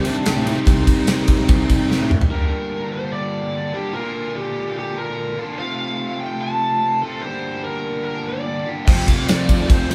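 A straight 4/4 pulse at 146 BPM drives this brooding, swaggering classic rock excerpt in G minor, where a dark, distorted bluesy lead guitar carries the melody over a bright, compressed distorted guitar riff throughout, while a biting overdriven guitar riff, a growly fuzz bass, a very quiet boxy parlour acoustic guitar and an up-front gated 80s drum kit with airy stone-room sheen and tight kick play through a drum fill at 1.9 seconds, drop out between 2.1 and 2.3 seconds, and return together at 8.9 seconds, all set in a moderate studio reverb that feels like a band playing live in one room.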